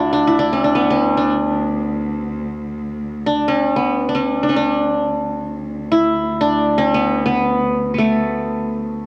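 The sound has the soft grain of a home cassette recording, set in a lush hall reverb with a 2.5-second tail. This is a short passage of Arabic maqam ensemble music, cut from a longer piece, and its mood is passionate and warm. The qanun carries the melody up front for the full 9.1 seconds, its plectrum-plucked triple strings giving an acoustic, bright-edged tone. Beneath it, a single bowed cello holds a low drone on D2 throughout, its clear, focused sound shaded with vibrato and sitting lower in the mix. Together the two instruments give the whole passage the feel of one unbroken, expressive statement.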